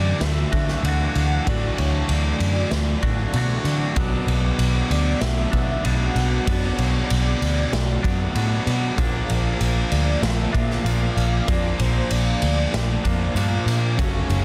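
A round, dark, foam-muted electric bass sits up front in this wistful, dreamy shoegaze and dream pop excerpt, moving at 96 BPM in a straight 4/4 over chords from Dadd9 to Bm and then Bb. A raw garage drum kit enters at 0.2 seconds with a punchy kick, a medium-tuned snare and a ride cymbal, its sound saturated and gritty, with a rolled-off top and a pumping, bright stone room. Two electric guitars play riffs alongside: one crunchy and overdriven with a subtle chorus, the other clean, compressed and twangy, trailed by reverse reverb. In the background, a velvety, full-bodied synth lead carries the melody with sawtooth, triangle and unison voicing, a filter sweep, vibrato, chorus and digital delay. A jingly tambourine, close, dry and very quiet, joins at 9.0 seconds. The whole mix is dense and heavily limited, with light reverb and a small room ambience.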